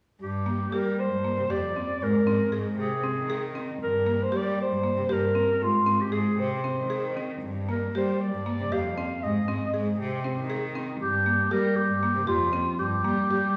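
Contemporary instrumental chamber music in an uneven 7/8 metre, this restless, pensive excerpt is cut from a longer piece. A clarinet carries the melody from 0.2 seconds, sitting up front with a soft attack, vibrato and a subtone that gives it a vintage, jazz-style character. Beneath it, a single bowed cello holds the bass line with a rich, expressive tone, vibrato and sliding portamento between notes. From 0.5 seconds a marimba struck with hard mallets adds percussive arpeggios on hardwood bars, its woody, buzzing sound kept dry and boxy. The harmony alternates between G minor and A-flat, with G minor seventh colouring the later bars before settling back on G minor at 12.8 seconds. A recital-hall reverb surrounds the ensemble with the resonance of a church or concert hall.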